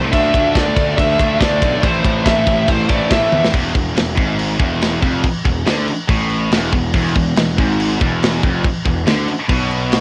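A distorted electric guitar riff and a fuzzy, overdriven picked bass open this dark, aggressive heavy metal clip at 141 BPM in straight 4/4, set in E phrygian dominant. A moment later two high-gain rhythm guitars join, bright and biting and sitting back in the mix, along with a tight metal drum kit placed up front, its medium-tuned snare, tight kick, crashes, ride and toms carrying a rolled-off top and a mid-forward body. Over the opening, a dark, high-gain lead guitar holds a short melody in a narrow high register across a Dm to Am progression, stopping at 3.4 seconds. A drum fill at 3.3 seconds leads into a new section on an E chord at 3.5 seconds, where the double-tracked, compressed distorted guitar drops out briefly before returning at 6.9 seconds. The bass stays round throughout, and the riff guitars and drums carry the grainy tint of a home cassette recording with very little reverb.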